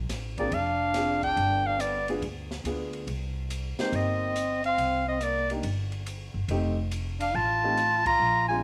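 A moderate echo-chamber reverb gives this cut from a longer small-group swing and bop piece a roomy studio glow, with a playful, swinging feel. A breathy clarinet carries the melody up front with light vibrato, while a trombone in a metal mute adds a buzzy, thin second line with scooped notes, over a natural-sounding grand piano moving through Bb7, G7b9, Cm7 and F7. Woody, growly pizzicato upright bass and a small-room drum kit with dark cymbals, a high-tuned snare and a boomy kick support the group until the band hits an accent at 8.0 seconds.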